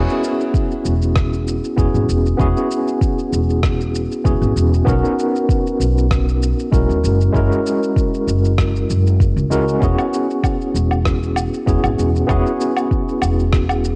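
Sunset chillout at 97 BPM in E lydian, smooth and warm, with a light 16th-note swing, cut from a longer piece. A barky, clean tine electric piano with analog delay sits up front alongside a woody pizzicato upright bass, moving through E69, Bmaj9 and F#9 chords. A gritty, tape-tinged sampler kit of electronic shaker, rim click and woodblock sits lower in the mix next to a deep, layered electronic kick that enters at 0.5 seconds, all captured on a home cassette recording with light reverb and digital ambience.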